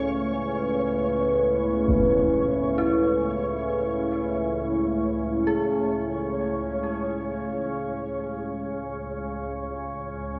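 Unsettling and ominous, this dark ambient drone drifts in free time, cut from a longer piece and resting on an A/C# chord. A deep, moody analog pad sits up front with chorus and phaser, over a calm, organ-like detuned drone in the low register and a grainy, flickering granular texture high above, while a huge, bright impact lands at 1.9 seconds under a low-pass filter. From 2.8 seconds an eerie, inharmonic bell warbles through arpeggios with chorus and analog delay, all set in a dreamy mix soaked in plate reverb with small room ambience.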